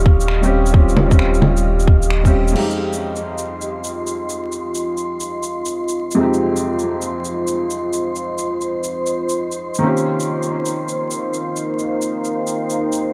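Swung sixteenths at 132 BPM in 4/4 drive this ghostly, wistful future garage passage in F minor, cut from a longer piece, where a tight, tape-warm electronic kick and a round, up-front dub sub bass anchor the opening until the kick drops out at 2.3 s and the bass at 2.5 s, just after a band accent at 2.1 s, while an organic electronic kit of bongos, crash, finger snaps and shaker carries on beneath an intimate felt-muted upright piano with 12-bit sampler grit, sidechain pumping and analog delay, a dark, detuned ambient pad with chorus, grit and pumping, and a breathy wind-like tuned noise texture, all moving from Eb13 to Fm7 and back to Eb13 inside a huge ambient reverb dusted with vinyl crackle.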